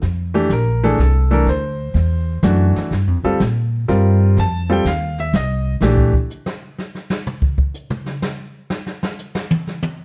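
This is a sophisticated, swinging jazz piano trio excerpt in F major and 3/4, moving at 124 BPM with a firm swing on the eighth notes. Upright bass and a brushed drum kit open together at the start, with the clear baby grand piano joining at 0.3 seconds for a solo that carries the melody across the middle and upper register. The bass is plucked and woody, with steel strings, and the piano sounds intimate and natural, its action noise audible up close. The harmony runs from Fmaj7 through D7, Gm7 and F7 to Bbmaj7. The drums launch a solo at 5.8 seconds on brushed snare, hi-hat, toms and a boomy kick, and after the bass and piano stop at 6.1 seconds, they carry on alone until 10.0 seconds. The production is dark with light reverb, the bass, drums and piano all sit up front, and the drums sound natural in a studio room.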